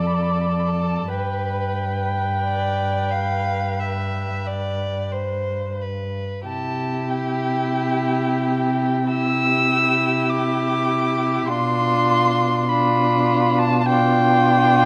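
A muted string quartet opens together in a slow, rubato romantic movement, the first violin singing a lyrical, veiled melody high above with vibrato, portamento and a smooth top, while the second violin sounds distant and the viola adds lightly vibrated accompaniment. Up front, the cello carries the bass with soft attacks and its own portamento, all four bowed con sordino with a dark shading, as the harmony settles onto C at 6.5 s and later turns to G7/B at 11.5 s. Close, detailed microphones catch the single players within a moderate scoring-stage reverb in this fragment of a longer work.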